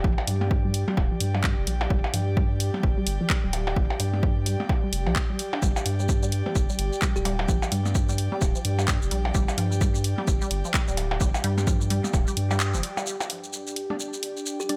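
A squelchy, resonant square-and-saw blip pluck drives this clinical, quirky minimal techno cut at 129 BPM in 4/4. Its riff sits between F3 and D4 with phaser, digital delay and sidechain pumping, and a filter sweep runs across it through the first 13 seconds. Underneath, a deep, saturated sine sub bass pumps along with a punchy, up-front analog kick, while a layered garage kit of handclaps, hi-hat and shaker and small-room percussion blips carry a 16th-note swing of 60%. A soft, breathy pad with chorus floats above, and a woody kalimba rings faintly with tape echo, sounding a brief G4 twice. At 12.6 seconds the kick drops out on a band accent, and near the close a swarming, wave-folded drone and a crisp, detuned wavetable chord stab with tape echo enter, the stab at 13.9 seconds, before the fragment cuts off in light digital ambience.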